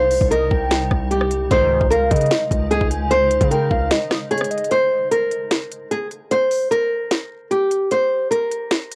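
This fragment of a longer piece has a hazy, home-cassette sound, with a modest booth ambience and a short, tight room tail. It is melancholic, menacing hip hop in a trap style, moving with a half-time feel. Up front, a small, fingerpicked nylon-string guitar carries the melody through a low-pass filter and analog delay, while crisp hats, a knocking kick, a sharp snare and rim clicks from an electronic trap kit sit close beside it with a tape-softened punch. Underneath, a heavy, sine-based 808-style bass with a noise layer hits and decays, and a blurred, evolving granular pad drifts far in the background under its own reverb. A velvety synth lead with chorus, vibrato, delay and plate reverb traces a smooth second line above the guitar, and a brief, juicy polysynth stab arrives at 1.5 seconds, resonant and bright with a filter sweep, chorus and phaser. The bass drops away at 3.9 seconds, and from 4.7 seconds the pad and lead fall silent, leaving guitar and drums to carry the stripped-back remainder.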